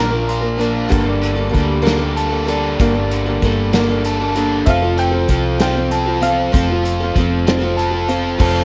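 A 6/8 pulse at 64 BPM, felt in dotted quarters with a straight feel, carries this short folk rock and heartland rock excerpt, and its mood is wistful and dusty. An unplugged drum kit comes in at 0.3 seconds, played with bundle sticks in a studio room: dark cymbals, hi-hat, a medium-tuned snare and a punchy kick. Beneath it, a hollow-body short-scale electric bass is fingered low and round through an amp. A picked acoustic archtop guitar sits up front with a boxy, bright tone, finger squeaks and plate reverb, while a double-tracked overdriven electric guitar plays a biting riff. A brilliant, woody upright piano with short sustain adds a high second line in brief touches, returning at 4.7 seconds. The harmony moves from Bb to Gmadd9 and settles on F, and the whole mix wears light reverb and the warbling pitch drift of worn cassette tape.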